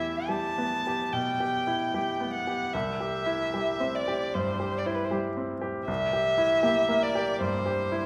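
Violin and bright baby grand piano open this melancholic, yearning excerpt of a slow romantic piano trio movement together, the up-front violin singing a smooth, even, vibrato-rich melody over the piano's brilliant, intimate accompaniment with audible action noise and short sustain, while a distant cello enters at 0.3 seconds with a soft-attacked, expressive second line full of portamento before ending at 7.2 seconds, all in rubato 4/4 at 62-80 BPM, moving from E minor to C and then C7, within a wet recital hall reverb.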